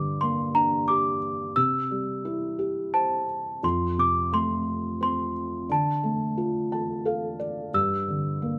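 A gentle lilt of three beats to the bar, played straight, carries this tender, innocent children's lullaby, taken from a longer piece. A worn celesta sings the melody high up, its bell-like tone sweet and delicate, with hard felt hammers and a slightly out-of-tune, dark colour. Beneath it a felt-muted upright piano supplies the accompaniment across a broad range, soft, mellow and vintage in character, its thick felt giving a smooth, intimate sound. Both instruments sit up front through close, detailed microphones with light reverb, and the harmony moves from Gm and C toward F, Dm and back to Gm. The piano adds a brief fill from 6.4 to 7.7 seconds as the second phrase unfolds.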